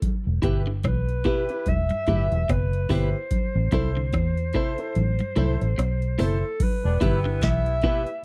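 A dry, close 1970s-style studio sound frames this serious, laid-back roots reggae excerpt in E minor at 73 BPM, where a booming, overdriven analog drum machine with a deep kick (muted from 5.0 to 6.6 s), crisp snare and metallic hats sits up front beside a dark, round, foam-muted fingered bass, while congas with a bright, high-tuned skin sit in the background, two picked electric guitars supply lush-chorused accompaniment and spring-reverbed arpeggios, a clear grand piano adds stabs, a distant jazz-style clarinet with scooped notes carries the melody over Em and Am, and a mellow horn section slips in at 6.8 s with a second line.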